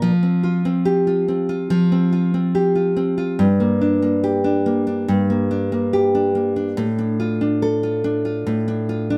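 A wet studio reverb surrounds a full-bodied nylon-string guitar that sits up front with a deep classical tone, captured as if played live in one room. This short pop fragment at 71 BPM in 4/4 has a heartbroken, emotional mood, the fingerpicked acoustic guitar carrying it alone across a range of G2 to A4. The harmony moves from Fsus2 to Gm at 3.4 seconds and settles on Dm/A at 6.8 seconds before the clip ends at 9.2 seconds.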